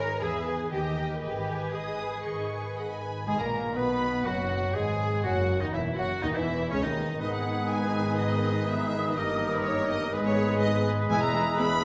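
A warm, focused violin section carries the melody from the start of this dramatic, restless classical excerpt, moving at 122 BPM in a straight 4/4 and opening in G# minor before shifting to B major at 3.3 s. Beneath it, a second violin section sits distant in the background, the close viola section adds very quiet accompaniment, and a concert harp rings softly with fingerpicked arpeggios. Cellos and a studio double bass section anchor the low end with rich, bowed vibrato. At 3.3 s the woodwinds and brass join: a clear oboe and a roomy clarinet trace second lines, a large flute ensemble adds an airy line with crisp attack, a mellow bassoon fills in accompaniment, and a soft-edged French horn section holds sustained chords in the background. The harmony moves through chords such as G#m, F#, B and D#/G, and the whole ensemble sits in a wet recital hall reverb.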